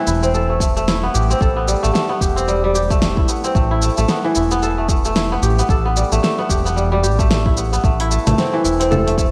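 Meditative and mystical, this organic downtempo excerpt moves at 112 BPM in A minor with a swung sixteenth feel, resting on a single Am7 chord throughout. An up-front, fingerpicked kora rings out crisp arpeggios through a low-pass filter, cassette tape and analog delay, while a round, detuned analog bass pumps underneath and a tape-warm deep house kit of congas, hi-hat, shaker and fat snare joins at 0.1 seconds. A deep electronic kick enters at 0.6 seconds, and a lush hall reverb and homespun cassette recording wrap the whole in a hazy glow.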